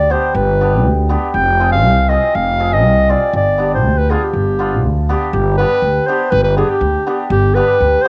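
This home recording on cassette has a light reverb and a touch of studio ambience around a short klezmer passage cut from a longer piece. The mood is festive yet soulful, set in a straight two-beat metre. Up front, a mellow clarinet in classical style carries the solo melody, while a woody, thumpy upright bass, played pizzicato on steel strings, sits equally forward with a dark tone. Further back, an acoustic hammered dulcimer supplies shimmering, ringing accompaniment, its sound colored by a cassette tape effect. The harmony moves from G to F minor at 1.4 seconds and returns to G at 3.3 seconds, with a new section beginning at 5.3 seconds.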